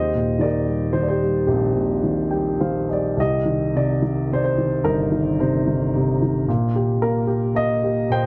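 Relaxed and warm, this short cut from a longer piece of lyrical classical solo piano moves at 110 BPM in a rubato 3/4, its dark, mellow grand piano sitting up front with long sustain and tape echo in a moderate spring reverb, adding a fill from 2.0 to 3.2 seconds as the harmony passes from Eb6 to Cm to Eb/Bb.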